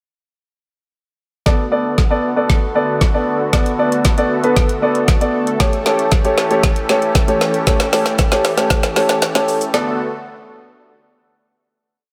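An up-front electronic drum kit drives this short, energetic dance-pop piece, with a knocking kick, woody snare, metallic hi-hats and shaker set in a small room and playing a four-on-the-floor beat that works as a drum fill across the build-up from 1.5 seconds. Alongside it, a warm grand piano sits close in the mix, playing syncopated, drop-2-voiced chords with a deep low end and a sidechain pump. Beneath both, a filtered supersaw pad made of detuned sawtooth voices in unison fades in slowly and holds evolving chords, pumping with the same sidechain effect. The harmony moves from Bm7 to A7 and returns to Bm7 at 9.7 seconds, where the build gives way to a final chord that rings on after the parts stop around 10 seconds. Light digital reverb adds a little space to the polished, driving sound.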